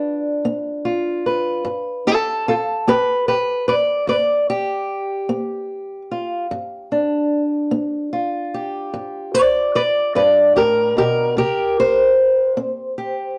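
Acoustic country blues in a rollicking, soulful mood, this short excerpt features a single fingerpicked old ladder-braced acoustic guitar, sitting up front with a dark, woody, boxy tone from its old strings. The playing moves at a slow 50 BPM in 12/8 with a straight feel in G mixolydian, ranging from G2 to D5 over a G7 chord that shifts to C5 at 11.4 seconds. Light reverb gives the solo guitar a touch of room around it.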